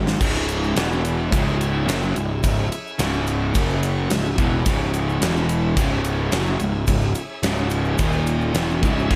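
A fuzzed, growly picked electric bass sits up front, overdriven and bright as it anchors a swaggering, brooding classic rock riff at 108 BPM in a straight 4/4, centered on C# dorian. A gated 80s drum kit shares the foreground with a punchy kick, fat snare and bright crash and ride cymbals in an airy stone-room sound, kicking off with a drum fill at 0.0 seconds. Two picked guitars carry the riff from the background: a compressed, distorted electric and a hollow-bodied, overdriven semi-hollow. A shouting tonewheel organ with key click and slow rotary speaker holds very quiet sustained chords from 0.2 seconds, alongside a grainy, saturated tube shaker. The harmony keeps returning to C#m between E5, F#5 and D#5 power chords, all under light reverb in this short cut from a longer piece.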